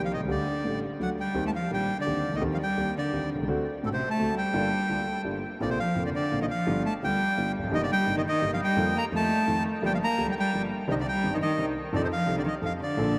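A rubato waltz-time sway carries this passionate, dramatic tango excerpt, with a reedy bandoneon singing the melody up front as a single bowed cello, close and smooth with vibrato, plays a rich second line beneath it. A warm, intimate concert grand piano accompanies from the start, its deep bass, short sustain, vintage character and audible action noise sitting near the listener. A huge, wet reverb sets the trio in a vast, echoing space, and at 5.6 seconds the key shifts from G minor to B-flat major for the second half.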